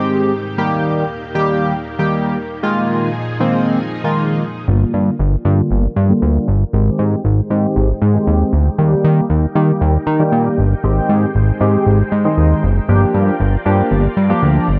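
Euphoric and carefree, this pop excerpt moves at 117 BPM in a straight 4/4 feel in Eb major. A glossy, retro chorused polysynth carries the accompaniment up front, its pulse-wave tone softened by a low-pass filter, while a lush vintage string machine holds sustained chords alongside it with a slow attack and evolving ensemble chorus. At 4.7 seconds a fat, detuned analog bass arrives with a saturated, wave-folded edge and a filter sweep, pushing a build-up that runs to the end. The harmony drifts through Abmaj7, Eb and Bb7sus4 before settling into a cycle of Gm7, Abmaj7 and Eb. Light reverb gives the mix a gentle sense of space around its mellow, sustained layers.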